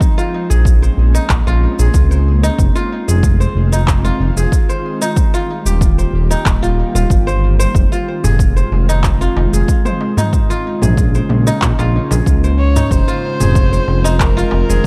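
A smooth, detuned synth bass sits up front in this organic downtempo excerpt, entering at 0.5 seconds with sustained, gliding notes in a low register. Beneath it, a punchy, overdriven electronic kick anchors a straight 4/4 pulse, layered with a gritty deep house kit of handclaps, shaker and toms. A bright, ringing kora plays fingerpicked arpeggios with delay over an ethereal, chorused pad that breathes with sidechain pumping in the background, moving through Bbm9, Fm7 and Eb. A crisp, deep metal-shell darbuka struck with hard hands joins at 8.2 seconds, set back in the mix. At 12.6 seconds an intimate, close kamancheh enters with light vibrato, a soft attack and portamento, its bowed line touched with delay. The production is dark and warm with light reverb, giving the piece an earthy feel.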